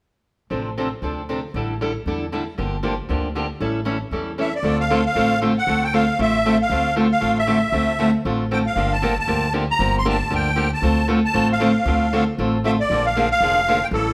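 A fast swung 4/4 pulse at 232 BPM drives this bittersweet, fiery D minor jazz manouche cut from a longer piece, where an up-front picked steel-string acoustic guitar and a woody, thumpy pizzicato upright bass with gut strings lay down the chords before a reedy, shimmering musette accordion takes the melody at 4.4 seconds, all heard as a band playing live in one room bathed in a wet large studio reverb.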